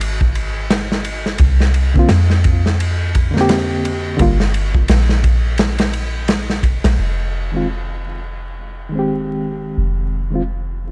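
A dry, crackling recording cut from a longer trip hop piece sets a cinematic, smoky mood with a swung feel, as a crunchy, saturated breakbeat kit of punchy kick, medium-tuned snare and dark ride cymbal sits up front over a soft, round 808-style bass with a deep, decaying sine tone. At 1.9 seconds a reedy, worn electric piano enters, slightly out of tune and heard through its built-in speakers, with tremolo, tape echo and vintage 12-bit sampler grit as the chords move from C9sus4 to Gm. The drums stop at 7.0 seconds, leaving the bass and piano on Fm7 for the closing section.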